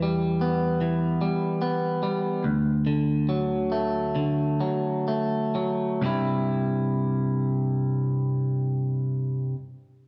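Hopeful and soaring, this short rock excerpt in C lydian moves at a slow 61-76 BPM in straight 4/4, with an up-front, twangy, slightly broken-up electric guitar picking compressed arpeggios from C2 to E4 over Em and D chords that slow down through the first 6.0 seconds before settling on C, all wrapped in the wet reverb of a stone room where the band plays live, until the guitar stops at 9.6 seconds.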